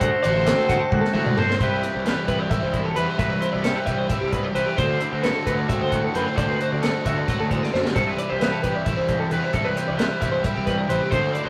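Driving along at 265 BPM in a straight 7/8, this bright, wistful math rock and midwest emo excerpt in C lydian opens with a brief smooth-topped trumpet phrase that ends at 1.4 s, while a twangy electric guitar with vibrato, a bright compressed twelve-string playing arpeggios, a growly fuzz bass, an overdriven double-tracked semi-hollow guitar riff and a compact cocktail kit with a high-tuned snare and punchy kick carry the D7 and Cmaj7 changes through drum fills in a rough rehearsal-room recording with a wet booth ambience and tube saturation.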